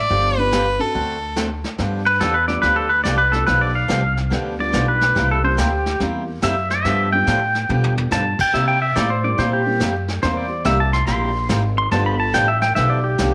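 A wet spring reverb gives this cheerful western swing passage a vintage sheen, swinging in G major at 142 BPM in 4/4. A clear, nasal fiddle with light vibrato and an airy bow opens with a brief melody up front, stopping at 1.4 s. From 2.1 s a clean, compressed pedal steel guitar, played with fingerpicks and slide, takes over with a solo full of volume swells that runs to the end. Underneath, a woody, thumpy upright bass and a boxy, picked swing-style acoustic guitar keep the pulse, while a dark, mellow upright piano sits in the background. A brushed drum kit with a punchy kick and dark cymbals adds a short fill at 7.7 s as the harmony moves through G7, D7 and C7 in this cut from a longer piece.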